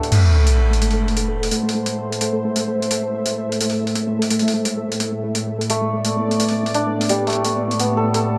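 A dry, gritty hardware recording with light reverb opens this tense, dark half-time drum and bass fragment at 172 BPM in A minor, where a sub drop hits up front at 0.1 s over a nasal, string-like bowed drone holding sustained Am chords under a filter sweep. A hammered santur shimmers through ringing arpeggios with tape echo, pausing at 3.6 s before returning at 5.7 s, while a mellow, detuned gated texture pulses in tempo with chorus and reverb. Meanwhile, a pitched-down, compressed sampler-style kit drives crash and hi-hat through overdrive.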